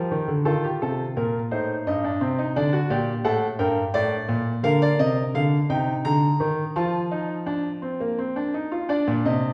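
Elegant and joyful, this short excerpt from a longer classical work is a baroque-style three-part fugue for solo grand piano, moving at 57 BPM in a straight 6/8 counted in dotted quarters. The concert grand sounds brilliant, with deep bass, an open tone and short sustain, spanning G2 to Bb5 across its 9.5 seconds. The harmony travels from Eb through Am7b5, D and Gm before settling into Bb major at 4.6 s, then passes through Cm and F to close on Bb at 8.9 s. The instrument is tuned slightly low, to A4 = 437 Hz. A wet recital-hall reverb places the listener further back in the room, lending the counterpoint a spacious, resonant setting.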